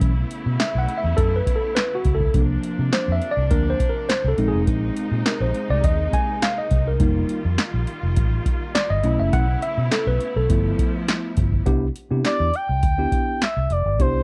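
A dry, close recording with a 1970s studio character carries this smooth, feel-good cut of early-eighties boogie funk, where a worn, slightly out-of-tune tine electric piano takes a solo up front while lush, bright bowed strings hold sustained chords until 11.7 seconds. Underneath sit a round, dark, foam-muted fingered bass and an analog drum machine with a deep kick, punchy snare, metallic hats and handclaps. At 12.3 seconds a mellow sawtooth lead with a soft attack, chorus, vibrato and portamento takes up the melody for the closing moments.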